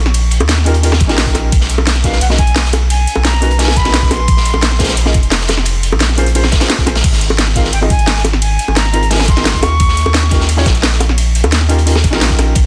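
Liquid drum and bass in a dreamy, uplifting mood, cut from a longer piece, where a round, saturated sub bass sits up front beneath a knocking electronic kick, a gritty high-passed breakbeat kit, a garage kit with a cracking snare and metallic hats, and tight high-tuned bongos, while a mellow felt-muted upright piano with audible action noise and delay carries the jazzy chords and a pure, distant silver concert flute with vibrato and delay sings the melody from 2.0 s and again from 7.6 s, all in a dry, dense, heavily limited modern master.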